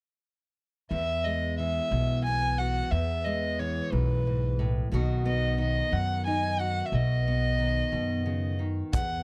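A dry, close-sounding indie folk excerpt in E major at 60 BPM in a straight 6/8, nostalgic and anthemic, where a dark, smooth-topped bowed fiddle with light vibrato carries the melody over bright fingerpicked steel-string acoustic guitar and a woody, thumpy pizzicato upright bass on gut strings, moving from Eadd9 to B at 4.9 seconds before a loose indie drum kit with a punchy kick and hi-hat arrives at 8.9 seconds.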